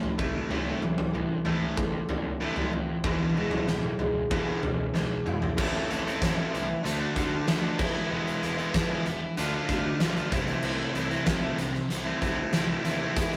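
Quiet-loud alternative rock in A harmonic minor at 95 BPM, dark and angsty, where a full-bodied jumbo acoustic guitar picks arpeggios until 5.6 s beneath a biting, up-front overdriven guitar riff, a sludgy distorted guitar riff that joins at 0.5 s, a growly fuzz bass and a huge arena drum kit with a fat snare and punchy kick whose fill at 4.9 s leads into the second section, all captured as a rough rehearsal-room recording with moderate reverb.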